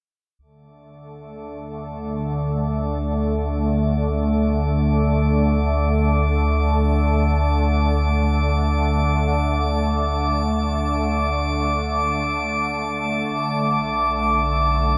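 Ambient music in free time, weightless and warm, tuned slightly low with A at 437 Hz and cut from a longer piece. A round, deep analog bass enters at 0.4 seconds, its dark, nasal tone sustained in the low register. From 1.3 seconds an organ-like drone sits up front, its detuned unison voices thickened by ensemble chorus and ring modulation, and it fades out gradually across the passage. At 1.8 seconds a glassy texture of drifting overtones fades in high above, bright and calm, with chorus and its own reverb. The harmony rests on a D5 chord before moving to Bm7 at 13.3 seconds, all of it bathed in a cavernous cathedral reverb with a long 5.8-second tail.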